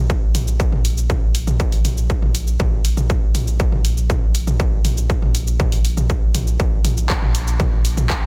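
A distorted, layered electronic kick drum sits up front in this melancholic, driving melodic techno cut at 120 BPM, alongside a punchy analog drum machine of handclaps, hi-hat, shaker and toms re-recorded in a large room, while a round, dark, detuned analog bass holds a deep Bb1 with sidechain pumping, all dry and densely limited.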